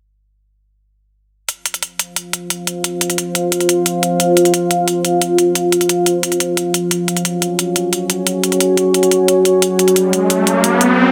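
Futuristic and dark, this excerpt of technical drum and bass sets crisp, layered electronic hi-hats alongside a deep, moody pad of detuned sawtooth unison with a sub octave, chorus and built-in reverb, which holds sustained chords from 2.4 seconds before a riser surges in at 10.1 seconds, all bathed in a lush hall reverb within a dense, heavily limited master carrying a faint mains hum.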